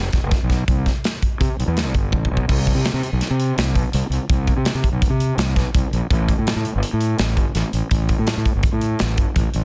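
Intricate and wistful, this short excerpt of math rock and midwest emo moves at 166 BPM in a straight 5/4, set in C major. A fuzz-soaked fingered electric bass, round and overdriven, sits up front from the start alongside a polished studio drum kit with a punchy kick, medium-tuned snare, bright cymbals and toms. A drum fill from 2.1 to 2.5 seconds leads into a new section, all captured dry in a dense, heavily limited modern master.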